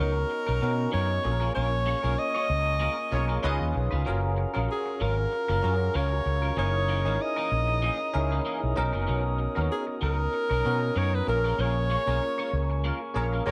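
A clear, close-miked alto saxophone with jazz-style vibrato carries the melody up front in this glossy, breezy pop excerpt at 96 BPM, with a light sixteenth-note swing over lush chords such as Bmaj9, C#9 and F#maj7. Beneath it, a bell-like tine electric piano and a twangy, compressed clean electric guitar riff each shimmer with ensemble chorus, while a fretless electric bass, amped and warm with lush chorus, sits prominently in the mix. A glassy, ethereal glass harmonica holds slow-attack chords in the background, and a distant horn section adds brief second-line touches at 3.1 s and 13.1 s in a small, lightly reverberant room.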